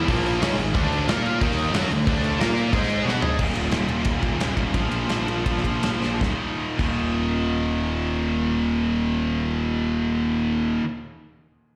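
Aggressive and epic, this heavy metal excerpt opens with a very quiet, smooth pipe organ holding sustained chords behind three bright, distorted high-gain guitar riffs, one scooped and one double-tracked, while a growly, fuzz-laden bass sits up front and a punchy big-room drum kit with a rolled-off top marks fills at 3.1 and 6.0 seconds; the organ and double-tracked guitar drop out at 3.4 seconds as the music slows, and the drums stop at 6.9 seconds, leaving guitars and bass to carry on to 10.8 seconds in a live venue sound.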